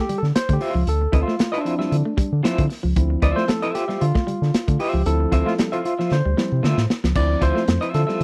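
A barky tine electric piano leads this driving funk excerpt with up-front stabs over a single Dm9 chord, backed by a round, deep analog bass, a gritty, saturated breakbeat kit with dark cymbals and a punchy kick, a twangy guitar riff at the edge of break-up, and a dark, clean semi-hollow guitar with tremolo entering at 0.6 seconds, while a breathy, distant trombone slips in briefly at 5.5 seconds, the band accents from 5.1 seconds, and a drum fill arrives at 6.1 seconds, in a dry, close 1970s-style studio recording.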